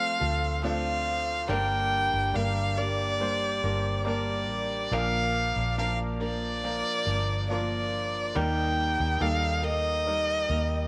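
A longing, heartbroken pop ballad in G minor at a slow 70 BPM, this clip moves from F through Gm, Bb and Eb as an up-front, close-miked solo violin carries the melody with expressive vibrato, soft attacks and portamento slides, its line touched by tape echo. Beneath it, an intimate concert grand piano with deep bass and audible action noise supplies accompaniment, while a fingerpicked flamenco guitar with faint finger squeak plays arpeggios and a glassy, ethereal glass harmonica holds slow-blooming chords, both set back in the mix. A dark, round, foam-muted electric bass enters at 0.2 seconds, and a moderate echo-chamber reverb gives the whole ensemble a shared sense of space.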